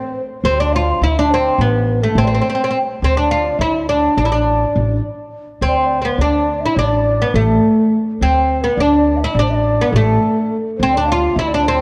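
Turkish makam ensemble in a soulful, longing 9/8, where a bright, woody oud carries the melody up front, a breathy, hollow ney with tape echo traces a soft second line above it, and a pizzicato upright bass enters at 0.4 s beneath them, all set in a moderate concert hall and coloured by the warbling pitch drift of worn cassette tape.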